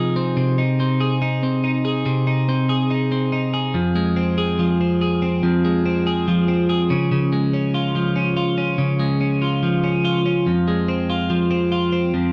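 A bright, twangy twelve-string electric guitar plays alone throughout this short indie pop passage, its clean picked tone compressed and sitting up front in a rough home-demo mix with a moderate studio reverb. The mood is restless and bittersweet, moving from an opening Ab/C chord into a longer stretch that circles through Fm and Db before returning to Fm around 10.5 seconds. It is cut from a longer piece and stops at 12.3 seconds.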